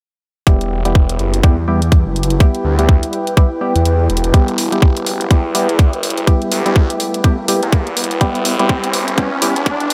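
A tight, overdriven electronic kick sits up front in this bouncy, swaggering bass house excerpt, driving a swung groove alongside an overdriven electronic hi-hat. Beneath it, a thick, swirling phased saw bass holds the low end on an E minor chord, its detuned unison body saturated with tube warmth and pumping against the kick. Hollow, organ-like stabs with a mellow, 12-bit sampler grit carry chorus, phaser and a diffuse ambient delay, and a filter sweep runs across them throughout. A warbling, nostalgic tape-like pad enters in the background at 1.2 seconds with a slow attack and built-in reverb. After the kick drops out briefly before 4.3 seconds, a build-up begins, with a background riser arriving at 5.9 seconds and a drum fill pushing toward the end.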